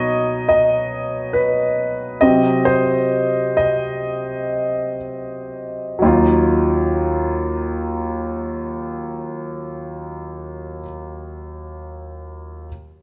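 Emotional and heartbroken, this slow pop passage in Eb minor moves at 58 to 72 BPM in 4/4, and it is cut from a longer piece. A concert grand piano carries the accompaniment, playing solo for the first 6.0 seconds: it is intimate and up front, with deep bass, long sustain and audible action noise. The tempo slows over the first 6.0 seconds as the harmony moves from Badd9 to Cdim, then settles on Ebmadd9 at 6.0 seconds, all inside a wet, large studio reverb with the feel of a live room.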